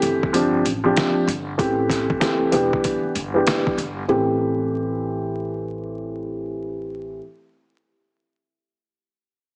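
A worn, mellow grand piano sits up front in this dark, tough boom-bap hip-hop fragment in A minor at 96 BPM, its cassette-tinged chords of G7sus4, Am7 and Em7 shaped by a filter sweep through the opening 4.1 seconds. A woody pizzicato upright bass with gut strings holds the low end, while a gritty, pitched-down sampler-style drum kit with a thumpy kick, medium-tuned snare and hi-hat swings on the 16ths until it drops out at 4.0 seconds. Light reverb and small-room ambience meet a heavily compressed, radio-like small-speaker sound flecked with vinyl crackle.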